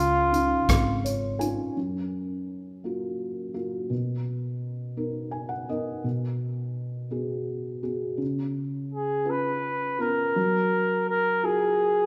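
An acoustic folk-pop ballad in a gentle 6/8, heartfelt and tender, cut from a longer piece. A felt-muted upright piano carries the accompaniment from start to finish, its tone dark, mellow and intimate, with the vintage smoothness of thick felt. At the opening a flugelhorn sounds a brief melodic phrase with a soft attack and a classical bearing. Beneath it, a woody pizzicato upright bass and a natural country drum kit of hi-hat, punchy kick and rim click play until 1.6 seconds. The piano then carries on alone through F#maj7, Bmaj7, G#m7/B and C#7 harmonies until the flugelhorn returns at 8.9 seconds, distant and roomy yet up front, to lead into the final section at 10.4 seconds. The recording sits in a wet recital-hall reverb.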